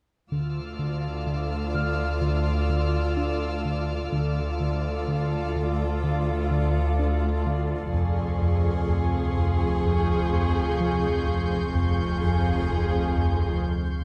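Cinematic suspense film score at a slow 63 BPM in 4/4, eerie and tense, moving from D minor to F minor at 7.9 seconds in this brief cut from a longer piece. A muted violin section carries the melody between F4 and Ab4 with a veiled, con sordino tone and soft attack, while a second muted violin section hangs high above as a faint texture. Muted cello and double bass sections bow the low bass line, the basses sitting in the background, under a round analog bass riff and a deep sine sub bass drone on D2 that holds until 14.0 seconds. A glassy FM pad enters at 0.8 seconds with slow-blooming sustained chords, shimmering through ensemble chorus and its own reverb, and a delicate, bell-like celesta plays on F6 from 1.7 to 8.0 seconds. The whole ensemble sits in a moderate scoring stage reverb, and the music breaks off briefly at 13.7 seconds.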